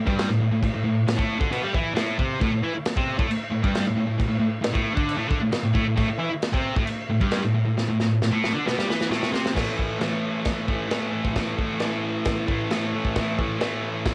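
A distorted fuzz guitar opens this short, menacing cut of garage rock, playing a gritty riff in A minor at 134 BPM in a straight 4/4, its bright, double-tracked tone sitting up front and ranging from G2 to G4. A vintage acoustic drum kit joins almost at once, at 0.1 seconds, with a punchy kick, a medium-tuned snare and dark crash cymbals, its small, pumping room carrying the color of cassette tape. A drum fill from 7.8 to 9.6 seconds leads the music out of its opening Am passage into a new section built on an A5 chord. Both guitar and drums stay close and present under a light reverb, giving the whole thing the raw, homemade feel of a cassette recording. The piece is cut from a longer performance and breaks off at 14.1 seconds.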